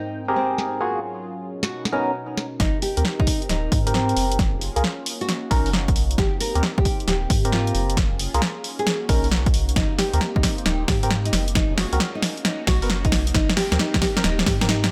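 An up-front, tape-warm analog drum machine snaps out hi-hats and a punchy snare in this soulful, sunny two-step UK garage excerpt at 134 BPM in Ab major with a swung 16th feel, framing a fingerpicked nylon-string guitar melody with digital delay, hollow, nasal organ stabs with chorus and echo, and a smooth, detuned sawtooth pad pumping in the background, before a rubbery, bouncy square bass and a punchy electronic kick arrive at 2.6 seconds to launch a build-up with a drum fill and a filter sweep on the stabs over lush major-ninth chords.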